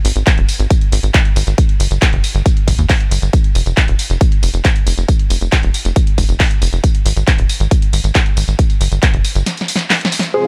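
Soaring and emotional, this uplifting trance excerpt moves at 137 BPM in a straight 4/4, with a tight, driving sawtooth sequencer bass pumping against an up-front, punchy layered electronic kick and a drum machine of handclaps, hi-hats, snare and tambourine, its snare, claps and hats carrying a short room while the hats and percussion take on filtered, pumping edges. After a drum fill from 9.5 seconds, a brief accent at 10.2 seconds brings in a huge, euphoric supersaw lead with phaser and 12-bit grit, a lush, nasal unison pad with chorus, and a soft, felt-muted upright piano whose action noise sits close and intimate. The whole mix is set in a digital ambience.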